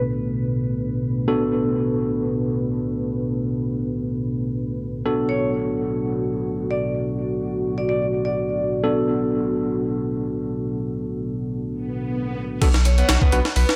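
Breakbeat in free time, energetic and playful, opening on a Bm7 held by a dark, detuned analog pad with chorus, 12-bit sampler grit and sidechain pumping, while an up-front tine electric piano plays filtered stabs through dub echo and a metallic, ringing vibraphone adds a small-speaker melody from 5.3 seconds. An electronic swell arrives at 11.9 seconds, and at 12.6 seconds the piece drops into a pitched-up, compressed sampler-style drum kit with a thumpy kick and high-tuned snare, a thick saturated sine sub bass, and a screaming, guitar-like overdriven synth lead riffing with vibrato. The light reverb and echo-heavy mix leave the fragment ending just after the drop.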